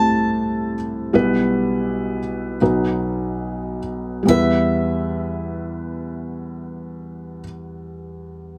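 An acoustic folk-pop ballad in E minor and 6/8, this short excerpt moves at a slow 34-46 BPM counted in dotted quarters, with a reflective, intimate mood and a straight feel. A picked acoustic guitar in a swing style carries the melody in a high register, its boxy tone touched by finger squeak and set in plate reverb. Beneath it, a felt-muted upright piano plays the accompaniment, mellow and up front, with audible action noise adding to its natural, close sound. The tempo slows through the first 4.3 seconds as the harmony passes from Am/C through Em/B to B, then settles on Em as the second section begins. The guitar drops out at 7.4 seconds, leaving the piano to ring on until 8.6 seconds in a small room with moderate reverb.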